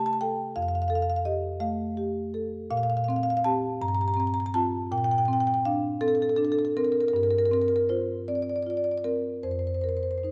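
A solo marimba played with medium mallets carries this short contemporary classical passage, its rosewood bars giving a woody, warm tone that sits up front in the sound. The piece moves in a flowing 6/8 at roughly 50-57 BPM counted in dotted quarters, with a rubato feel that lets the pulse breathe. Set in Bb major, the marimba spans from F2 up to Bb5, moving through colorful harmonies such as Fadd9, Bbsus2, Gm7 and Bbmaj9 before arriving on Fsus4 at 9.4 seconds. A moderate concert hall reverb with a 1.9-second decay surrounds the instrument, and the dark, warm production adds to its flowing, warm mood. The 10.3-second passage is cut from a longer piece and ends on that suspended chord.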